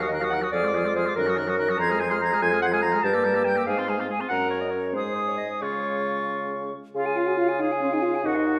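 Heard through a wet, reverberant recital hall, this cheerful, lively classical-period movement for wind quintet in Db major moves in a rubato 6/8 at about 88-97 BPM, with a pure, bright, tongued silver concert flute carrying the melody, a distant, soft-attacked oboe on the second line, a clear clarinet and a mellow French horn filling the accompaniment, and an up-front bassoon with light vibrato anchoring the bass throughout this short passage cut from a longer piece.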